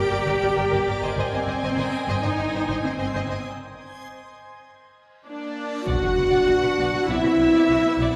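A spacious concert-hall reverb wraps this short, tense and eerie cinematic cue. A distant, lush violin section carries the melody in the background, while a clear, studio-sounding violin section holds a second line above a rich viola section, a focused, close cello section and a bowed double bass section, all playing with vibrato. Throughout, a reversed, detuned and granular texture, bright and dreamy, swells with slow attacks and long releases over the chords, and the harmony moves from Gm to Abmaj7/G before dropping into a break at 3.5 seconds. A mellow French horn section enters with sustained chords at 5.3 seconds. A reverse cymbal then leads into a huge impact at 5.9 seconds, as the music settles on Bm.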